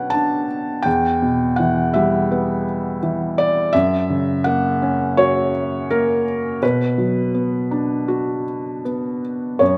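A rubato feel in 4/4 carries this brief, melancholic and dark classical fragment for solo felt-muted upright piano, whose soft, mellow, intimate tone sits up front with audible action noise as it moves from Bmadd9 through Em and F# back to Bm within a moderate, roomy reverb over just under 10 seconds.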